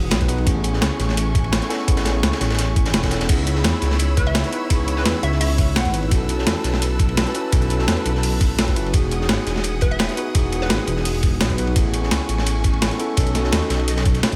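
A straight 4/4 groove at 170 BPM drives this dreamy, rolling liquid drum and bass excerpt, built on a thumpy, compressed electronic kick and a gritty sampler-style breakbeat kit with a medium-tuned snare, crash, hi-hat and ride. Beneath it sits a second, crunchier breakbeat kit, quieter and dark, with a high-tuned snare, dark cymbals and a rolled-off top, high-pass filtered on its snare, hats, cymbals and room. A deep, rumbling detuned saw bass sits up front from E1 to E2, its unison voices beating against each other. A mellow tine electric piano with delay and a lush, bowed string section with vibrato and sidechain pumping carry the harmony through Amaj7, C#m7, B7sus4, Emaj9 and back to Amaj7 before closing on B9. A hollow, bouncy square-wave pluck with chorus, digital delay and vintage 12-bit sampler grit adds short melodic phrases between B4 and F#5, first entering at 4.2 seconds and returning at 9.8 seconds, all set in a small room ambience.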